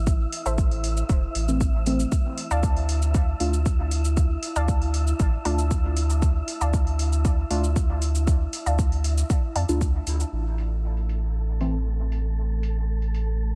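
Dub techno at 117 BPM in a straight 4/4, this hazy, nocturnal excerpt moves from A minor to D minor over a dry, close-sounding mix. A deep, layered electronic kick sits up front beside a round, sine-like sub bass that pumps with the sidechain. Electronic cabasa and metallic hi-hats, re-recorded in a small room and darkened by low-pass filtering, fill out the groove. A warbling, lo-fi, detuned sawtooth pluck carries the riff through chorus and dub echo, while soft, full-bodied chord stabs add a nasal tone through chorus, phaser, cassette tape colouring and more dub echo. Underneath, an airy, breathy noise texture drifts like wind in its own reverb. The kick and pluck drop out near 9.9 seconds, the harmony gives way at 10.3 seconds, and the stabs end at 11.7 seconds, leaving the bass, percussion and texture to close the passage.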